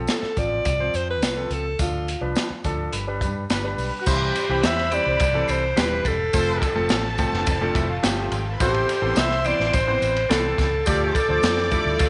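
Uptempo 1960s-style soul with a joyful glow, cut from a longer piece, where a breathy, intimate alto saxophone carries the melody over grand piano, round and punchy muted fingered bass, a gritty breakbeat drum kit with dark cymbals and a background tambourine. A band accent lands from 1.8 to 4.1 seconds, a clear horn section enters at 2.6 seconds, and then a mellow, bell-like glockenspiel and a lush, distant string section join at about 4 seconds as the chords move through C, F and Amadd9. A clean, compressed electric guitar riff with ensemble chorus slips in at 7.2 seconds, all within light studio reverb.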